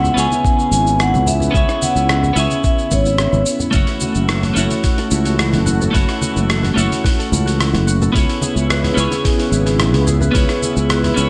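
Sunset chillout in F# minor at 109 BPM with a warm, smooth mood, this excerpt opens with a dark, ringing vibraphone melody through tape echo for its first 3.4 seconds over a clean twelve-string electric guitar, a lush, warbling detuned pad, a growly, punchy fretless bass up front, gritty, tape-warm sampler-style drums with cabasa, hi-hat and rim click, very quiet congas and bongos, and a thumpy electronic kick from 0.4 seconds, before a bright, fingerpicked concert harp takes up delayed arpeggios at 3.9 seconds as the chords move from C#m7 to F#m7 and back, all in light reverb.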